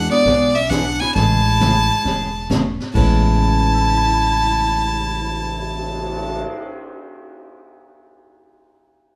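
A swinging 134 BPM western swing groove in A major carries this down-home country fragment, where a bright, intense fiddle with light vibrato leads up front over a punchy, roomy clarinet second line, a woody, thumpy pizzicato upright bass, a distant jazz brush kit with dark cymbals and a boomy kick, a full-bodied picked dreadnought guitar and a mellow upright piano in the background that rings on alone until 7.4 seconds, all moving from E9 to Amaj7 in a moderate large studio reverb as the band plays live in one room.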